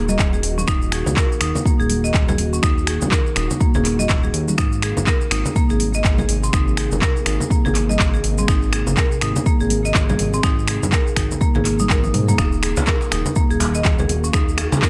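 A swung 4/4 groove at 123 BPM drives this spiritual afro house clip in Eb dorian, built on a deep, tape-warm electronic kick, an overdriven deep house kit with metallic hats, snaps, handclaps and toms, ringing close congas and grainy maracas, with a drum fill at 11.9 s leading to a tight, cracking djembe that joins distantly in the background at 12.4 s. A smooth, detuned and saturated synth bass pumps under woody, bright marimba arpeggios carrying tape echo, while an ethereal, full-bodied pad with ensemble chorus and built-in reverb holds sustained chords behind them. The harmony moves from Ebm to Abadd9 at 4.6 s and back at 12.4 s, and the sidechain pumping on the pad, bass and marimba adds to the dry, driving mix.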